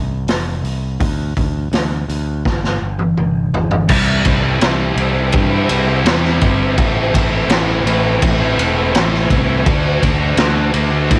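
Quiet-loud alternative rock with a bittersweet, cathartic mood, cut from a longer piece: a growling, overdriven fingered electric bass opens alone at 0.0 s, a raw garage drum kit with a punchy kick, gritty saturation and a rolled-off top joins a moment later and plays a fill, and then a thick, bright, double-tracked fuzz guitar riff enters at 3.9 s over C, Am and D, all set in studio reverb on a home cassette recording.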